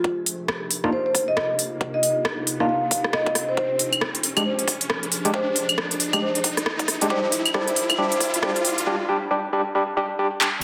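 Skippy and bouncy, this two-step UK garage build-up at 136 BPM swings its sixteenths over Cm11 and Fm69 chords, with an ethereal, airy pad pumping under sidechain while a filter sweep moves across it and a riser climbs until 8.9 s. A punchy, layered kick holds the low end as an up-front house kit of crisp hats, claves, handclaps and rim clicks skips along, and an overdriven, barky tine electric piano fires gritty stabs through fast tremolo and delay. Above them a ringing, metallic vibraphone melody with vintage, band-limited character echoes in the wet digital room before a drum fill at 10.4 s closes the cut.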